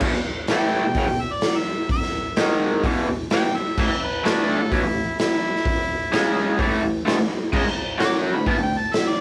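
A rough rehearsal-room recording with moderate reverb carries this raw, rowdy garage rock excerpt at 128 BPM in E major, where a bright, double-tracked overdriven electric guitar riff and an up-front acoustic drum kit with punchy kick, crash, hi-hat and snare back a mellow, vintage-toned overdriven harmonica soloing with scooped notes from 0.5 seconds.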